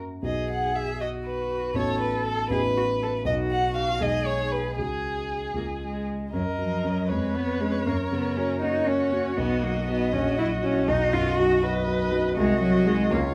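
Spirited and lively, this quick classical-period movement for piano quartet moves in a straight 6/8 at 79 BPM (dotted quarters), starting in B major and shifting to F# major from 3.3 s. An up-front violin carries the expressive, vibrato-laden melody with portamento, while a rich-toned cello with a soft attack sings a second line, and a warm concert grand with deep bass supplies the accompaniment. A clear, focused viola joins the accompaniment at 6.3 s, all in a light reverb, in this excerpt from a longer piece.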